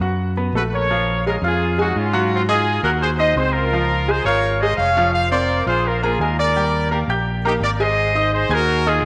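Driving and passionate, this brief salsa excerpt pairs a bright, worn baby grand piano, its action noise audible, with a round, punchy fingered electric bass from the start, while a clear, tight trumpet section with light vibrato and slapback echo takes the melody up front from 0.6 seconds, all set in a wet echo chamber reverb over chords moving from Bbm7 through Db6 and Ebmaj7 to Ab9.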